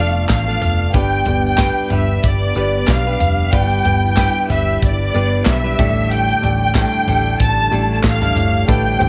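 Dramatic and bittersweet, this piano-driven pop excerpt at 93 BPM in 4/4 with a light 16th-note swing sets a lush, expressive violin section melody with vibrato, portamento and slapback echo over an intimate concert grand piano with audible action noise, a very quiet detuned sawtooth analog pad, a clean, compressed guitar riff recorded direct and sitting in the background, a dark, round foam-muted picked bass, and an airy, polished acoustic drum kit with punchy kick, handclaps, hi-hat, snare and toms entering at 0.3 seconds, all in light small-room reverb as the chords move from Dm/F through G to A7sus4.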